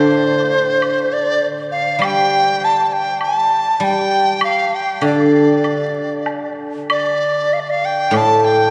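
A large dizi and a guzheng open together in this graceful, festive excerpt of Chinese chamber music, moving in a free rubato feel. The dizi carries the melody up front with a pure, buzzing bamboo tone, vibrato and a crisp attack, while the guzheng, plucked with fingerpicks, rings out a silvery, up-front accompaniment low in its range. A close, bright woodblock enters at 0.8 seconds and sits in the background, and the whole ensemble is bathed in a cathedral-like reverb with a faint vinyl crackle.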